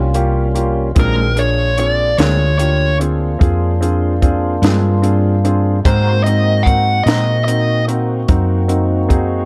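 Soulful and laid-back, this short slow blues in 12/8 is a fragment cut from a longer piece, with a dark, warm small-room sound. A clear, woody upright piano opens with a fill in the first second, its action noise audible and its notes ringing with long sustain, while a fat tonewheel organ holds sustained chords through a slow rotary speaker. Underneath, a round, hollow-body fingered electric bass sits up front beside a compact cocktail drum kit, dry and punchy, with a high-tuned snare, kick and hi-hat. From 1.0 s a dark, smooth, overdriven lead guitar carries the picked melody, and a bright, twangy second guitar, slightly broken-up through a small old amp with tremolo, adds background accompaniment until 7.3 s. The harmony moves through rich ninth chords, from a rootless Eb9 to Bb9 and then Ab9 at 5.8 s.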